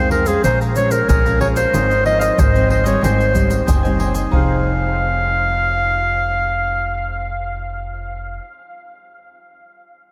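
Bittersweet yet lively, this excerpt from a longer samba and choro piece sets a bright, up-front, classical-style clarinet melody, touched with analog delay, over a crisp picked cavaquinho in the background, a dark fingerpicked nylon-string guitar with audible finger squeak, and a woody, thumpy pizzicato upright bass. Pandeiro, egg shaker and a deep surdo, close and dry with soft hands, play from 0.1 until about 4.5 seconds, while the chords move from Bbm7 through Fm7/Ab and Abmaj7 to Fm7. The mix is dreamy and soaked in a huge ambient reverb.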